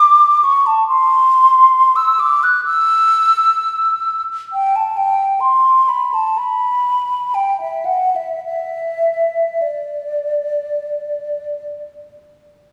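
Lyrical and nostalgic, this short excerpt from a longer classical piece features a single concert flute playing freely in rubato, with the tempo drifting between 42 and 71 BPM in D mixolydian. The flute's pure, mellow, hollow tone carries vibrato, soft attacks and lifted highs, sitting up front as it ranges from D5 to F#6 until 11.8 seconds. A wet recital-hall reverb with a 1.9-second decay surrounds the line.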